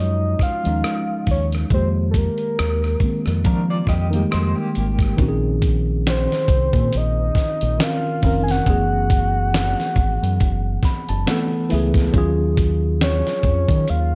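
R&B and neo-soul in Bb minor at a slow 69 BPM with a light 16th-note swing, this smooth, sultry excerpt moves through minor eleventh chords beneath a round, octave-layered synth lead with chorus and vibrato. A worn, slightly out-of-tune tine electric piano accompanies throughout and plays a fill at 10.4 seconds, while a deep, punchy fingered dub bass and a gritty sampler-style drum kit, with a thumpy kick and fat snare re-recorded in a large room, sit up front. An electric guitar through a small old amp adds a brief lo-fi, slightly broken-up tremolo line from 3.5 to 5.2 seconds, and the production is dark and warm with light reverb.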